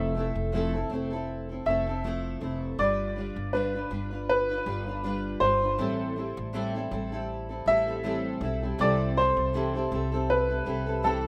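An upright piano carries the melody up front, its natural tone and short sustain trailed by a tape echo as it moves between A4 and E5. This easy-going, carefree slice of acoustic pop sits at 80 BPM in 4/4 with a gentle 16th-note swing, in C major. A double-tracked, fingerpicked steel-string acoustic guitar fills in the accompaniment with an auditorium-style body. An upright bass plays pizzicato underneath, its woody low notes a little further back. The chords move through Fmaj7, G7, Am7 and C6, and all three parts play together from 0.0 to 11.3 seconds in this short section cut from a longer piece. Light reverb and a rough home demo mix give it a relaxed, unpolished feel.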